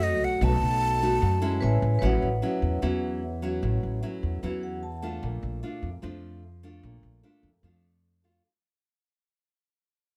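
A breathy, expressive jazz flute with vibrato and a soft attack leads this relaxed, breezy bossa nova excerpt in A major at 150 BPM, carrying the melody up front for only its first 1.8 seconds. Fingerpicked nylon-string guitar and woody, growly pizzicato upright bass run throughout, while a ringing vibraphone with medium hard mallets and motor vibrato adds accompaniment and a short fill that ends at 5.2 seconds. Chords move from B7 to Amaj7 and A6, later shifting to Bbmaj7 as the dry-sounding recording fades out from 2.0 seconds.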